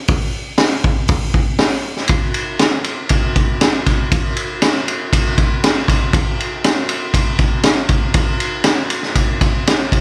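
Rock drum groove cut from a longer piece, driving and gritty in a straight 4/4, with a vintage acoustic kit up front: a punchy kick, a high-tuned snare, and hi-hat and ride on dark cymbals, its mid-forward sound and rolled-off top heard through a live venue's PA with light club reverb, moving into a new section at 2.1 s.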